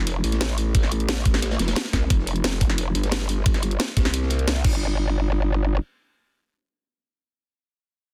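Dark technical drum and bass at 177 BPM, tense and cut from a longer piece, opening on a drop where an aggressive, growling, wobbling bass with tube saturation and chorus sits up front alongside a knocking electronic kick that enters at 0.7 seconds, a produced kit with cracking snare, hi-hat and crash, and a gritty, rolled-off breakbeat kit with filtered hats and snare in the background, all pressed into a dense, heavily limited modern master before the drums stop around 4.7 seconds and the bass carries on alone until 5.8 seconds.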